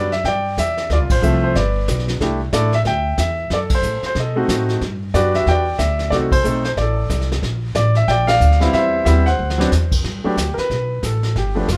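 A warm, up-front concert grand piano carries the melody over woody pizzicato upright bass with steel strings from the opening of this playful swinging jazz piano trio excerpt in G major at 184 BPM, joined at 0.1 s by a vintage brush kit with a fat snare, tight kick, dusky cymbals and a rolled-off top in a small pumping room, all under light reverb, as the band hits accents and the drums fill at 9.4 s before the piano takes a solo at 10.0 s.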